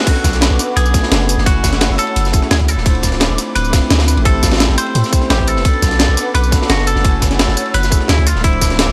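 A straight 4/4 groove at 172 BPM drives this soulful, melancholic liquid drum and bass fragment in B dorian: an overdriven, tight electronic kick enters at 0.1 seconds and a deep, mellow 808-style bass sits up front from 0.2 seconds, while a gritty, pitched-up sampler-style breakbeat kit with a high-tuned snare, crash, hi-hat and tambourine is layered over a darker, saturated breakbeat kit of ride and snare tucked in the background. Over chords moving through Bm7, F#m7, Dm7 and Am7, a twangy, picked clean electric guitar carries the melody through digital delay, backed by a bell-like tine electric piano and a soft, breathy pad with chorus glowing behind. The whole fragment plays as a drop, bathed in digital ambience.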